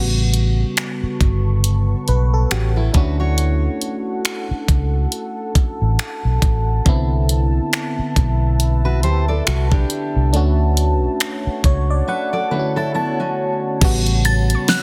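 Contemporary R&B with a romantic, tender mood and a swung sixteenth-note feel, built on a round, foam-muted electric bass and an up-front electronic drum kit with a knocking kick, a fat, soft-clipped snare, hi-hat, finger snaps and crash cymbal. A bell-like FM electric piano with chorus carries the chords and plays a fill from 11.2 seconds, while a deep, moody sawtooth pad with chorus and built-in reverb sustains beneath and a fingerpicked dreadnought acoustic guitar adds arpeggios from 2.5 seconds. After a break, a ringing, inharmonic synth chime with tremolo and a faint, crystalline wavetable pluck with tape echo enter at 14.3 seconds, in a dense, heavily limited mix with little reverb.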